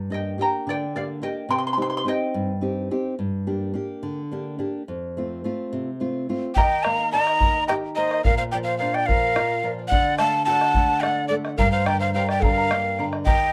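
This melancholic, wistful Andean folk excerpt opens on a bright, fresh-stringed nylon-string guitar, fingerpicked in classical style and placed up front, with a shimmering charango of double strings featured above it until 2.9 seconds. The piece moves in a straight 6/8 at 72 dotted-quarter beats per minute in G minor, tuned to A4 = 438 Hz, with the harmony passing from Gm through Cm and F. At 6.5 seconds a breathy, hollow cane quena takes the melody, close-miked with vibrato and a crisp, chiffy attack, while a larger wooden quena adds an airy, distant and expressive second line beneath it. The charango returns alongside them, and a deep bombo recorded in a small room supplies percussion as the chords shift through Eb, Bb and D before landing back on Gm. Light reverb and a dark production frame the ensemble.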